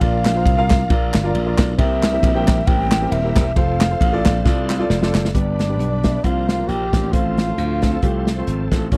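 A dry, close 1970s-style studio sound frames this jubilant, soulful snippet of uptempo gospel at 135 BPM with a swung feel in F major, where a mellow, clay-toned alto ocarina carries the melody over an intimate grand piano with audible action noise, a bright, shouting tonewheel organ in the background through slow rotary speaker and chorus vibrato, a growly, glassy slap bass and a punchy, up-front country drum kit, while hollow group handclaps join until 5.2 seconds and, after a drum fill, a breathy tenor saxophone with scooped notes joins the ocarina on the melody from 5.3 seconds.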